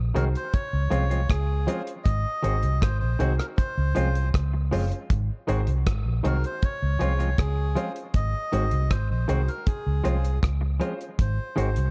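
Laid-back and uplifting, this roots reggae excerpt sways at 79 BPM in Ab mixolydian, moving between Ab7 and Dbmaj7. A dry reggae kit with a tight kick, hi-hat and rim click sits up front beside a round, foam-muted vintage electric bass, while a clean, compressed semi-hollow guitar with tape echo and a woody, slightly detuned upright piano with short stabs fill the accompaniment. A reedy, breathy melodica carries the melody through its own tape echo, set in a small room with light reverb and a dark production.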